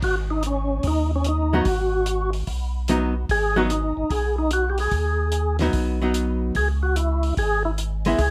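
Soulful and bluesy, this swung soul jazz organ trio passage opens with a fat, lightly overdriven percussive tonewheel organ carrying the melody, its key click and slow rotary speaker up front. Beneath it, a second, clean and piping tonewheel organ supplies the bass, and a dry, muffled, lo-fi drum kit with a fat snare and tight kick sits lower in the mix. At 1.5 seconds a dark, compressed hollow-body archtop guitar joins with picked accompaniment over a G#m7 harmony that shifts to C#m at 6.6 seconds, all in light reverb.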